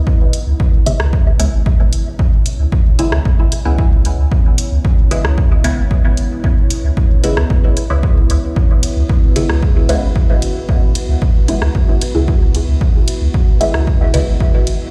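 A hazy, cavernous stretch of dub techno at 113 BPM in C# minor opens on a deep, moody pad of detuned sawtooth unison over a sine sub octave. The pad holds a C#m7 chord with a slow attack, chorus and its own built-in reverb, alongside a muted, nasal chord stab whose filter pluck and moving notch pass through phaser and dub echo. A dry, punchy electronic kick sits up front from 0.1 seconds, framed by studio reverb. An analog drum machine adds hi-hat, ride cymbal and rim click, and a soft, round sub bass built from triangle and square waves arrives at 0.5 seconds, holding low between G#1 and C#2. The pad, stab and bass each carry sidechain pumping, and the recording sounds as if played on a big sound system in a bare room, lasting about 15 seconds cut from a longer piece.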